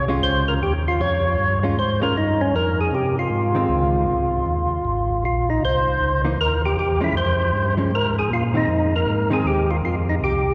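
A vast, wet cathedral reverb surrounds this short soul jazz organ trio excerpt, cut from a longer piece, giving it the spacious ring of a church or concert hall. At 156 BPM in 4/4 with a swung eighth-note feel in F minor, the mood is soulful and bluesy. Up front, a fat, percussive tonewheel organ carries the melody between Db4 and Db5, its third harmonic percussion, light overdrive, vibrato and slow rotary speaker giving each note a bite. Beneath it, a second tonewheel organ supplies a mellow, round, dark bass line from Ab1 to C3, lightly overdriven with chorus vibrato and the same slow rotary swirl. Further back, a clean, compressed hollow-body electric jazz guitar, dark and fingered, comps from 0.1 to 9.8 seconds over changes that move from a rootless Bbm7 through Fm7, C7#9 and Bb7 before settling back on Fm7.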